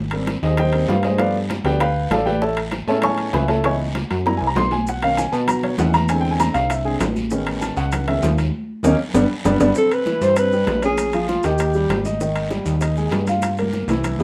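A straight 4/4 groove at 196 BPM drives this sophisticated, danceable Afro-Cuban jazz excerpt, with ringing metal-shell timbales, distant high-tuned congas, very quiet low-tuned bongos and a raspy guiro sitting beneath a punchy, funky sawtooth-and-pulse analog bass with a fast, decaying filter pluck. An intimate grand piano, up front with audible action noise, takes a solo through the jazzy chord changes until 9.8 seconds, while grainy, band-limited vintage maracas join at 4.9 seconds. An alto saxophone then plays a brief solo in a warm subtone, with vibrato and scooped notes, ending at 12.1 seconds, all in a moderate studio reverb.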